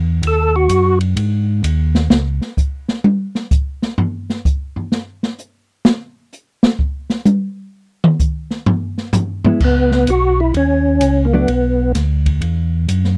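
A dry, close recording with a 1970s studio sound puts every part up front in this short, late-night soul jazz organ trio excerpt, swinging in 4/4 at 128 BPM. A mellow, round tonewheel organ carries the bass line through a stationary speaker, playing from 0.0 to 2.4 seconds and again from 9.6 seconds to the end. Above it, a fat, lightly overdriven organ voice with third-harmonic percussion, key click, chorus vibrato and a slow rotary speaker states brief melody figures, then returns at 9.6 seconds as the harmony moves through chords such as Badd9, Bm and Esus2. An acoustic jazz kit heard in a small room enters at 0.2 seconds and plays to the end, with dark cymbals, a medium-tuned snare, a boomy kick and a rolled-off top, and it takes an extended solo from 2.1 to 9.6 seconds. A clean, compressed hollow-body electric guitar adds dark, fingered accompaniment briefly from 9.5 to 11.5 seconds, deepening the soulful mood.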